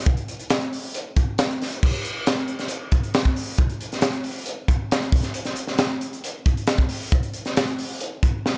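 Intricate and restless, this short rock fragment cut from a longer piece features a crisp acoustic fusion drum kit alone at 136 BPM in a straight 4/4, its crash cymbal, hi-hat, tight kick and high-tuned snare sitting up front in a small, pumping room with light reverb and a dark production.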